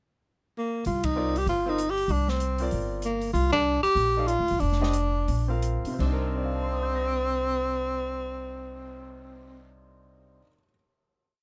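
A breathy tenor saxophone opens this short, spiritual and hypnotic modal jazz piece in C dorian with a pickup at 0.6 s, its vibrato-tinged call phrases sitting up front over a swung 4/4 at roughly 163-193 BPM. Woody pizzicato upright bass in a two-feel, an airy small-room drum kit keeping time on the hi-hat with dark cymbals and a boomy kick, and a clear grand piano comping in syncopated quartal voicings join within moments. Band accents land at 1.0 and 3.5 s as the harmony moves from Cm9 to Bb, and the tempo slows from 3.3 s. The close, detailed recording carries little reverb, and the group settles onto a final Cm9 chord from 6.0 s.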